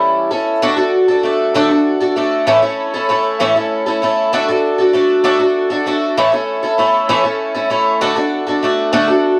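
This rock fragment, cut from a longer piece, carries a hopeful, open-road mood at 65 BPM in 6/8, counted in dotted quarters with a straight feel. A picked twelve-string acoustic guitar plays alone for the full 9.4 seconds, ranging from A2 to A4 and sitting up front in the mix. Its octave-doubled strings have a dark, boxy body, while a lush chorus gives them a shimmering edge. The harmony opens on A7/E and then sways between D and A, starting on D at 0.6 seconds and returning to it at 8.0 seconds. The sound is dry and close, in the manner of a 1970s studio recording with little reverb.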